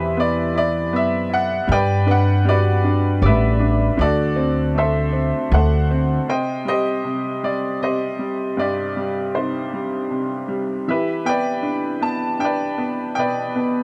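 In a straight waltz-time feel, this nostalgic yet hopeful acoustic folk-pop ballad excerpt is led by an upright piano carrying the melody, its tone bright, worn and slightly detuned, sitting up front. Beneath it, a woody, thumpy pizzicato upright bass on gut strings anchors the low end while a fingerpicked Celtic harp rings softly in the background with arpeggios. The harp drops out at 5.1 seconds and the bass at 6.2 seconds, leaving the piano alone over darker minor chords in a dry, close, 1970s-style studio sound.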